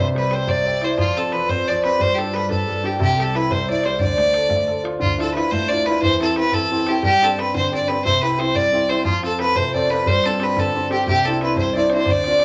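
A wet studio reverb surrounds this short cut from a longer Celtic jig in 6/8 at 119 BPM, dark, lively and a little wild, moving around C, F, Gsus4 and D minor chords. Up front, a clear, earthy bowed fiddle with light vibrato carries the melody, while a bright, fingerpicked Celtic harp rings in the background as a second line, dropping out at 5.9 seconds and returning at 9.0. A woody, vintage upright piano with long sustain plays the accompaniment, a damped, tight bodhran enters at 0.2 seconds, and a dark, thumpy pizzicato upright bass with gut strings sits low in the mix.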